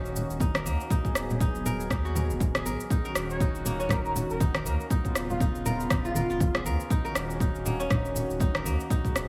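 A punchy electronic kick sits up front in this driving, earthy afro house excerpt at 120 BPM in Eb minor, its layered, produced sound given a small-room character and set alongside an electronic cabasa and rim click with a swing on the sixteenths. Low-tuned congas with a thick, damped skin and soft hands stay in the background, while a round, deep analog bass with a fast attack anchors the low end. A bright, crisp kora plays ringing fingerpicked arpeggios through a low-pass filter and dub echo, set over a smooth, detuned sawtooth pad holding sustained chords with chorus. The bass, kora and pad all pump against the kick through sidechain compression as the harmony moves between Ebm7, Abm7/Eb and Db7/Eb. From 3.3 to 6.5 seconds an expressive synth lead with vibrato carries the melody, its dark tone roughened by vintage 12-bit sampler grit and trailed by dub echo. Light reverb and digital ambience give the whole a gentle sense of space.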